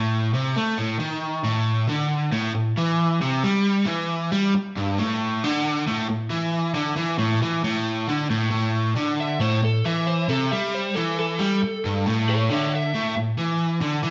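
An up-front, double-tracked semi-hollow guitar drives this raunchy rock excerpt at 136 BPM, its overdriven, picked riff sitting low with a hollow-body warmth and a touch of spring reverb as the harmony moves from Am to A5. At 9.2 seconds a darker overdriven slide guitar, played with fingerpicks, enters in a higher register above it for a brief solo that ends at 13.2 seconds. The band sounds live in a stone room with a reverberant, wet ambience and a rolled-off top end.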